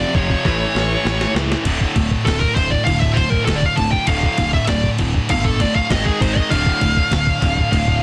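A straight 4/4 pulse drives this heavy, aggressive metal passage, cut from a longer piece. A gritty, compressed, sampler-style drum kit with a thumpy kick, medium-tuned snare and crash cymbal plays a fill from 0.4 to 1.7 seconds. Beneath it, a direct, growly picked electric bass holds the low end, while three distorted rhythm guitars stack up the riff: a very quiet, compressed one, a heavy high-gain part in the background, and a double-tracked, scooped high-gain part, all bright and picked. Up front, a dark, high-gain lead guitar carries the melody and breaks into a solo at 1.7 seconds that runs to the end. The sound is dry, with little reverb, and the master is dense and heavily limited in a modern style.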